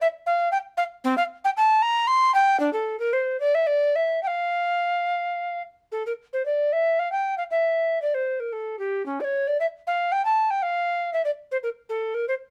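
In a rubato 3/4 that drifts between 104 and 120 BPM, this solemn, introspective baroque-style fantasia for unaccompanied tenor recorder opens in F major before turning to D minor at 5.9 s. The mellow recorder sits up front with a woody, airy tone, a touch of vibrato, tongued notes with an audible chiff and rolled-off highs, ranging from C4 to C6 under light reverb. The passage is cut from a longer piece.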